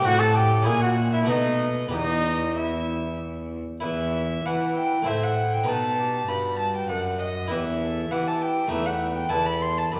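Classical baroque-style sonata movement in triple time with a flowing, introspective rubato feel, where a distant, roomy trumpet carries the melody alongside an up-front, reedy gut-string violin second line, while a round, plucked Flemish-style harpsichord accompanies and a rich period-style cello holds the bass, the whole ensemble set in the wet reverb of a recital hall in this excerpt cut from a longer piece.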